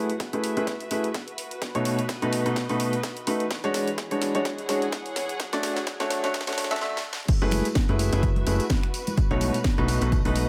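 A swung 4/4 groove drives this energetic, bittersweet piano house excerpt, with a punchy, tape-warm electronic kick sitting up front beside a layered house kit of cracking snare, warm hats, finger snaps and crash cymbal. A clear, worn grand piano carries the riff from the start over extended seventh, eleventh and thirteenth chords, its long sustain trailing dub echo and pumping against the kick while a low-pass filter sweeps across it through the build-up. Behind it, a dark studio string section adds a bowed, woody ensemble texture with light vibrato and a soft attack, breathing with the same sidechain pumping. Drum fills lead into a short break at 6.8 seconds before the drop lands at 7.3 seconds, when vintage-sounding tambourine and congas played with soft hands slip into the background. At 7.4 seconds a plucky analog bass arrives, funky and decaying, its sawtooth and square tones edged with ring modulation, all inside a small room with light reverb.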